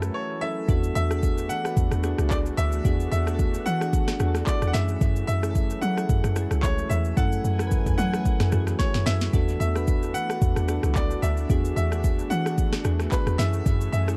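An overdriven, up-front afro-pop drum kit drives this late-night amapiano piece at 111 BPM in 4/4, its deep kick and sharp snare joined by handclaps, rim clicks, shaker and toms, with a swing of 55% on the 16ths and a drum fill at 8.8 seconds. Soft, mellow synth keys with a chorused electric-piano character open with a brief fill and break before the drop at 0.7 seconds, where the round, dark log drum bass arrives with its percussive, decaying punch. A clear, natural grand piano carries the melody through a dub echo, while a lush, thick unison pad with chorus sustains chords in the background. The harmony sways between F#m9 and E9sus4, giving the passage a deep pull. The mix is dry in room sound but heavy on echo, and the clip is cut from a longer piece.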